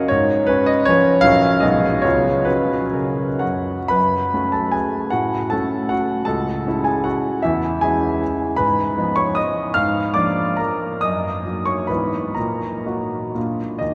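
In a lilting 3/4 with dotted rhythms and free rubato, the tempo drifts between 112 and 169 BPM. This proud, graceful romantic dance for solo grand piano is cut from a longer piece. The piano sounds clear and intimate, sitting up front with audible action noise and long sustain, ranging from A#1 to F6. It opens in F# major, moving through dominant and supertonic harmonies before settling on the tonic. At 3.9 s the music turns to F# minor and passes through C# minor, then darkens further into Eb minor from 8.6 s, closing on a Bb chord. A cathedral reverb with a 6.6-second decay surrounds the playing, giving it the spacious bloom of a church or concert hall.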